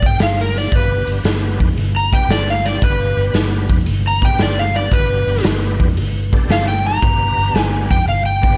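Blues rock and southern rock in a raunchy, swaggering power-trio mood, this swung excerpt opens on a G chord with an up-front, overdriven slide guitar soloing through tape echo, a dark, foam-muted, round fingered bass, and a saturated, punchy garage drum kit of hi-hat, kick and snare in a bright stone room, while a thick, key-clicking tonewheel organ enters at 0.7 seconds with sustained chords through a slow rotary speaker and chorus vibrato.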